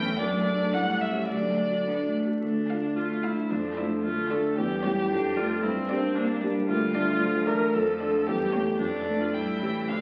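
Heard through the crackle of a very old 78 rpm record and the wet reverb of a recital hall, this short cut from a longer work is a quick classical-period movement for piano quartet in D minor, moving at 112 BPM in a straight 2/4. All four players sound throughout, with a clear, focused bowed violin carrying the graceful, cheerful melody high above the ensemble. A bowed viola with vibrato sits up front in the accompaniment, while the cello supplies a second line beneath, both with a similarly focused, vibrato-touched tone. The concert grand piano brings a dark, mellow colour and deep bass to the accompaniment and is the most prominent instrument in the blend. The harmony opens on D/F# and A7 before settling into D minor at 2.4 s, then passes through C#dim/E, Gm and A7/E, landing on A7 at 9.3 s.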